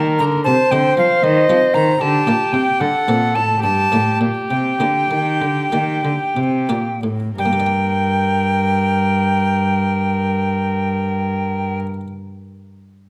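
A baroque-style classical sonata movement in G minor, cut from a longer piece, moves in a grave, solemn 12/8 at 57-78 BPM, slowing down from 1.5 to 7.4 seconds through chords of Cm, Gm, D7 and Gm. An airy tenor recorder with chiff and vibrato carries the melody up front from 0.2 seconds. Beneath it a distant, nasal gut-string violin plays a second line, a rich cello with light vibrato holds the bass, and a muted, lute-like buff-stop harpsichord accompanies in the background, all in a moderate recital hall reverb.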